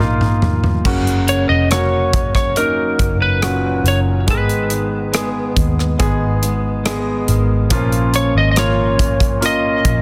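A dense, heavily limited modern mix with light reverb and small-room ambience frames this emotional, longing pop ballad at 70 BPM, heard as an excerpt cut from a longer piece. It opens on a drum fill from the modern studio kit, whose bright cymbals, tight kick, rim click and toms sit up front with soft clipping on the snare, while a clear, polished baby grand piano carries the accompaniment beside a round, punchy, foam-muted vintage bass and a compressed, slightly broken-up guitar playing arpeggios through analog chorus in the background. At 1.3 seconds a dark, lightly driven lead guitar steps forward with the melody, colored by tape echo, over chords moving from Bbsus4 through Gb and Abmadd9 to Bbm.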